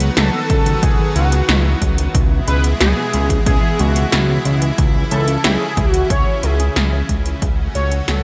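A thick, bold unison lead carries the melody from 0.2 seconds, its detuned sawtooth tone given vibrato, analog chorus and digital delay in this moody, cinematic synthwave passage cut from a longer piece. Beneath it, a lush, bright unison pad holds sustained chords with a slow attack and long release, breathing with chorus and sidechain pumping, while a very quiet analog pluck traces round, short-decay arpeggios. A glossy, retro chorused synth bass sits up front on a low C#, its mellow pulse-wave body colored by tube saturation and the same sidechain pumping. The 80s electronic pad drums bring a gated snare and metallic hats, and a punchy, tape-warm electronic kick plays from 0.5 to 7.6 seconds. The harmony moves from B over C# through E over C# and C# minor to F# minor over C#, all set in light reverb with a bright 1980s-style digital production that fades out over the closing seconds.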